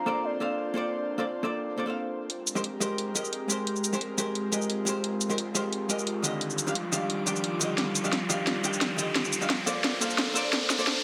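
Uplifting and lush, this liquid drum and bass excerpt at 175 BPM in Ab lydian opens with a velvety synth lead carrying a brief melody through chorus, cassette-tape colour and dub echo, over a breathy, detuned pad and a dark, clean hollow-body jazz guitar with delay placed up front. At 2.3 seconds a build-up begins as the layered electronic kit arrives with a cracking snare, hi-hat and cabasa in a small room, joined at 4.4 seconds by a riser. The chords move from Abmaj9 through Ebmaj9 to Bbmaj9, and a drum fill from 7.8 seconds drives toward the close. A moderate recital-hall reverb gives the whole a polished, spacious finish.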